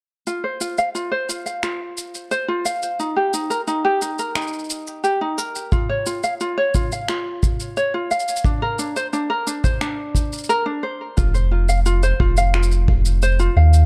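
A straight 4/4 pulse at 88 BPM comes from an electronic shaker and finger snaps, tape-warm and sitting lower in the mix, in this delicate folktronica passage cut from a longer piece. Up front, a mellow, fingerpicked ukulele plays light arpeggios between D4 and F5, its tone shaded by a low-pass filter and trailed by delay. The harmony moves through F5, Eb, Db and Bbadd9 before returning to F5. A tight, smooth acoustic kick drum played with brushes joins at 5.7 seconds, and at 11.2 seconds a round sine sub bass arrives up front with a fast attack and deep, sustained notes. The production is dark and warm, with little reverb.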